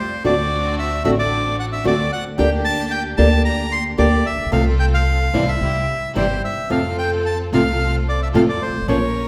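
A reedy, up-front bandoneon carries the melody from the start of this passionate, nostalgic tango excerpt, played at 111 BPM in 4/4 with a rubato feel in F major. Fingerpicked flamenco guitar with audible finger squeak and a woody, thumpy pizzicato upright bass support it. A distant, lush bowed string section adds focused stabs with vibrato as the chords move from D7 through Gm/D, F/C and C to F, and the players sit in the wet reverb of a recital hall.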